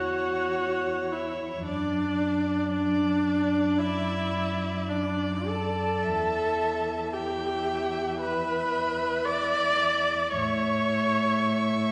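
Heard from further back in a recital hall with a 1.5-second reverb, this excerpt from a slow, romantic string quartet movement in D major unfolds at a rubato 56 BPM in a tender, serene mood. The up-front viola carries an expressive accompaniment full of vibrato and portamento, while a clear, even violin sings the melody and a second violin traces a second line with a smooth top and sliding, expressive bowing. Underneath, the cello plays an intimate, close bass sul tasto with soft attacks and an airy bow, as the harmony moves from C#madd11/E through D/F# and Em to A.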